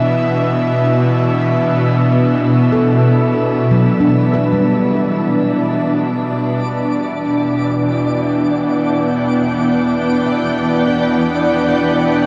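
Ambient, reflective and melancholic at 74 BPM in E minor, this excerpt opens with a shimmering, ethereal pad and a nasal, string-like drone, joined at 2.7 seconds by ringing, meditative handpan arpeggios in diffuse delay, then at 6.4 seconds a dark cello section fades in low in the background as the harmony moves from Cmaj7 to Em7, while a twinkling granular texture sparkles above, all steeped in a wet shimmer reverb and the warbly pitch drift of worn cassette tape.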